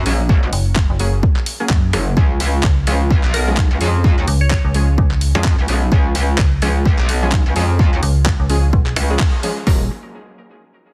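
A distorted, wobbling metallic bass sits alongside a second metallic FM bass, both pumping to the sidechain beneath a punchy, overdriven house kit layered with a garage kit's handclaps and bright hats, bold orchestra-hit-like stabs, and a glassy, warbling wavetable pluck in the background from 3.3 to 5.1 seconds, making this a bouncy, aggressive bass house drop at 128 BPM with swung 16ths, moving from Gbadd9 to Db before a band accent at 9.2 seconds, all with a dry, heavily compressed radio sound.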